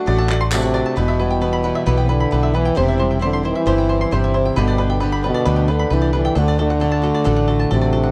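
Nostalgic and anthemic, this indie folk passage moves at 134 BPM in a straight 4/4, cut from a longer piece and built around a growing arrangement. A clear, classical-style French horn carries the melody up front throughout, while a foam-muted fingered electric bass sits up front, direct and amped, beneath it, entering at 0.1 seconds. A woody, slightly detuned upright piano sounds in the background only for the first second, and a hollow group handclap and a jingly, dry tambourine flicker briefly near the start. A shimmering, octave-doubled twelve-string guitar with subtle chorus and a twangy, percussive banjo playing arpeggios through digital delay run throughout, and from 1.0 seconds a dark fingerpicked steel-string guitar with finger squeak joins in the background. The chords move from D/A through Em, C/E and G to D, all wrapped in a small room and the worn, warbling pitch drift of old cassette tape.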